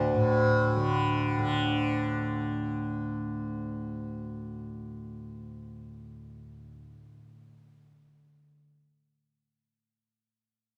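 Bathed in a wet recital-hall reverb, this devotional, serene Hindustani classical excerpt sets a very quiet, plectrum-plucked sitar, its sympathetic strings ringing, against an up-front, softly plucked tanpura whose warm, buzzing, shimmering drone continues on its own after the sitar stops at 1.9 seconds and lasts until 8.5 seconds.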